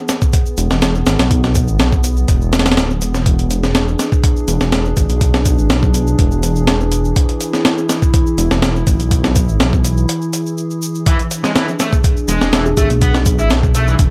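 Swaggering and energetic, this 123 BPM breakbeat excerpt rides a gritty, pitched-up sampler drum kit with a thumpy kick and a background electronic shaker over a deep, rumbling detuned saw bass and a warbling, lo-fi tape-like pad holding an E7 chord with chorus and sidechain pumping, set against vinyl crackle, until a brief break gives way to a distorted, double-tracked fuzz guitar riff at 11.1 seconds and a woody kalimba note plucks softly at 12.7 seconds.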